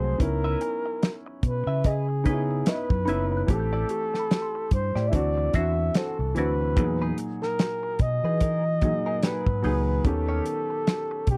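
This is a dry, close studio recording in a 1970s style, with only a light touch of reverb. It is cut from a lush, silky soul piece with a cinematic mood and a swung sixteenth-note feel. Up front, a breathy flugelhorn carries the melody in an intimate jazz-style solo, its dark, whispered tone marked by soft attacks, scooped notes and vibrato. Beneath it, a worn concert grand piano with deep bass provides accompaniment, a fingered electric bass sounds punchy and amped, and a soul drum kit with a fat snare, tight kick and rolled-off top enters at 0.2 seconds. A bright, twangy clean electric guitar, recorded direct and compressed, plays a picked riff through a wah, while a delicate, bell-like celesta adds sweet texture in the background from 0.6 to 6.0 seconds. The harmony moves through rich extended chords, from C#m9 to Am7, D9 and Emaj9#11 before closing on D#7b13.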